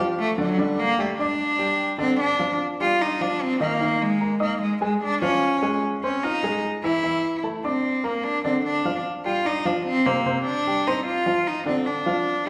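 Lively and sophisticated, this jazz excerpt in a straight 4/4 pairs a bowed solo cello, played sul tasto with a soft attack and a nasal, floating tone, with an intimate baby grand piano whose action noise can be heard and whose notes have a short sustain. The cello takes the melody from 0.2 s and has a solo moment in the opening 2.2 seconds. The piano supplies accompaniment through shifting harmonies such as Ebmaj9, Dbmaj9 and Bbadd9. The cello sits close and up front, and the piano also sits up front, in a church or concert hall with a wet, lingering reverb.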